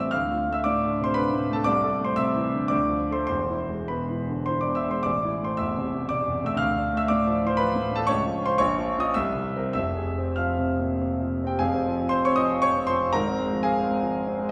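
This is a romantic classical character piece for solo piano, passionate and bittersweet, in 3/4 with a rubato feel that lets the tempo drift between 94 and 123 BPM. A grand piano carries the whole excerpt from 0.0 to 14.5 s, ranging from E1 up to F6. Its tone is present and polished, with long sustain, and it sits up front even though the listener seems placed further back in a recital hall. The hall's reverb is wet, with a decay of about 1.6 seconds. The harmony opens around D minor and A minor, passes through E and D minor, then turns to F minor from 8.1 s by way of Db, Bbm and C7. A new section begins at 11.6 s and carries on until the passage is cut off from the longer piece.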